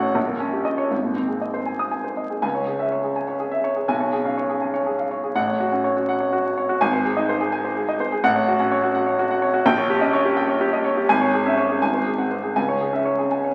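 Heard through the crackle of a very old 78 rpm record and the wet bloom of a recital hall, this fragment of a longer classical virtuoso piano study is stormy and agitated, moving in a rubato 6/8 at 82 BPM in C# minor. A solo grand piano, intimate and up front with audible action noise, spans G#1 to D#6, opening on dominant harmony before settling into C# minor at 2.4 s. From there it passes through F# minor and back toward a closing cadence on C# minor at 12.6 s.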